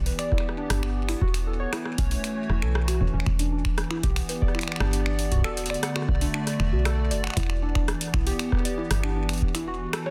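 Melancholic and cerebral, this IDM excerpt in straight 4/4 drifts over a chord cycle circling Em7, with a hollow, flute-like pad holding sustained chords under chorus while a woody, round FM bass sits up front in the low register. A warbling, lo-fi pluck with detuned, dusty character spins arpeggios through analog chorus and delay, its filter sweeping as it evolves. An analog drum machine supplies finger snaps, metallic hats and rim clicks with soft clipping and digital delay, joined by a deep, tape-warm electronic kick in a dry, dense, heavily limited mix.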